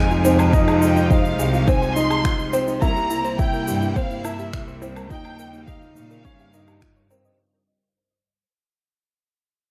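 Melancholic and hypnotic, this short excerpt of piano-and-strings electronica moves at 105 BPM in F minor, with a dark, lush violin section carrying an expressive melody with portamento over sul tasto string-quartet chords, a bright, bowed cello bass and a soft pluck's arpeggios colored by chorus, cassette tape and digital delay. An intimate baby grand piano with audible action noise plays a riff through delay, while an up-front, deep electronic kick enters at 0.5 s beside overdriven shaker, woodblock and finger snaps re-recorded in a large room. Sidechain pumping moves the quartet, pluck and cellos through Fm7, C7 and Eb9, all set in a moderate echo-chamber reverb as the passage plays as a drop under a fade-out.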